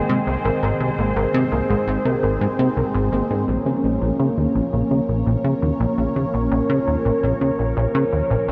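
Bathed in a huge, wet reverb and the warbling pitch drift of worn cassette tape, this short cut from a longer piece of mysterious, cosmic sequencer-driven space music moves at 84 BPM in Bb minor, shifting from an Ab chord to Bb minor at 3.5 seconds. A swirling, bright phased analog pad holds detuned sawtooth chords up front with phaser and chorus, while a punchy, funky analog bass riff with a moving notch filter and tape echo enters at 0.1 seconds. Beneath them, a very quiet, mellow, round pluck traces gentle arpeggios.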